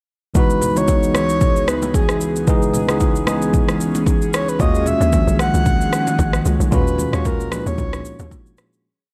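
Late-night and soulful, this short amapiano piece at 113 BPM in C# dorian sets clean, rhythmic rootless chords from an up-front tine electric piano over a mellow, airy pad in the background. A breathy, flute-like synth lead carries motif-based call phrases with vibrato, chorus, tremolo and digital delay, while an electronic afro-pop kit drives the swung groove with a deep kick, steady shaker and syncopated rim clicks. Very quiet, bright congas and bongos sit beneath, a hollow, bouncy log drum bass enters at 4.6 s with sliding syncopated bursts as the harmony moves from C#m11 to D#m11, and the dry mix fades out from 6.7 s.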